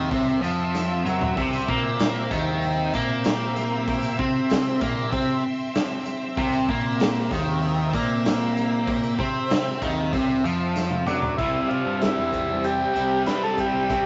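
A fuzz guitar riff, distorted, double-tracked and up front with a phaser on it, leads this hazy, kaleidoscopic psychedelic rock excerpt at 96 BPM in a straight 4/4 and C mixolydian. Beneath it, a shimmering, warbling string machine holds slow-attack violin chords with ensemble chorus, and a growling picked electric bass adds overdrive from the bottom. A raw garage drum kit with a punchy kick and a medium-tuned snare plays a fill almost at once, around 0.7 seconds, and again just before the second section. A jingly, close tambourine sits in the background until 11.3 seconds, while a buzzy vintage combo organ with light vibrato steps up front with the melody from 11.1 seconds. The whole mix lives in a small room with moderate reverb and a muffled top end.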